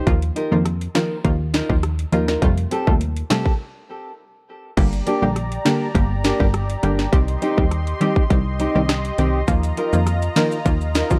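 Bouncy and sultry, this excerpt of G minor dancehall at 102 BPM sets fingerpicked nylon-string guitar arpeggios with delay over a round, chorused analog pluck, a punchy sawtooth bass and an overdriven electronic drum kit with tight kick and sharp snare, reaches a break at 3.6 seconds, then brings in a lush, detuned unison pad with sidechain pumping at 4.8 seconds and bright maracas in the background at 9.5 seconds.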